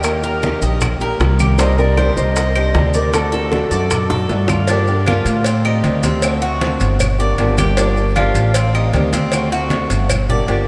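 Soaked in a huge, dreamy reverb, this sultry Cuban son and guajira cut moves at 155 BPM in G minor, with a dark, thumpy pizzicato upright bass on gut strings up front and a bright, metallic tres picking arpeggios on double strings over a fingerpicked archtop guitar with audible finger squeak. In the background, a thumb-plucked nylon-string guitar carries the melody through lush chorus and delay while a pure silver flute with vibrato plays a second line; both stop at 4.5 s, as a drum fill from 4.1 to 4.7 s leads into a second section cycling through Gm7, Am7b5 and D7. Low-tuned, thick-skinned congas played with soft hands, tight high-tuned bongos and cowbell, woody claves and grainy, vintage-sounding maracas form a warm percussion bed beneath.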